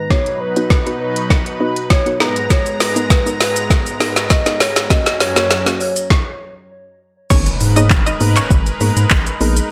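A hollow, woody clarinet-like synth lead and a lush, airy unison pad open this confident, energetic dance-pop passage in G# minor at 100 BPM, with a soft, round pluck and an up-front, tape-tinged R&B drum kit of soft kick, handclaps, shaker and crash building through a drum fill over chords moving from B to G#madd9 and F#. The build halts in a brief stop at 6.1 seconds. At 7.3 seconds the drop arrives, with a bright analog pluck taking the melody, a deep, saturated sub bass pumping beneath, and an electronic impact sitting in the background of a lightly reverberant digital space.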